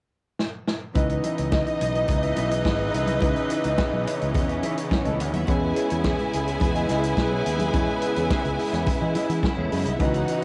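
Disco at 106 BPM in E major, celebratory and joyful, recorded at home on cassette with little reverb: a punchy, rolled-off vintage drum kit opens with a fill at 0.4 seconds before fingered electric bass, damped congas, and two lush bowed string sections (one clear and focused carrying a second line, one rich and smooth holding chords) arrive at 1.0 seconds over C#m9 moving to E6. In the background sit a barky tine electric piano with overdrive and phaser and a dark, clean electric guitar with tube saturation, while a tight horn section adds stabs from 2.1 seconds in this fragment of a longer piece.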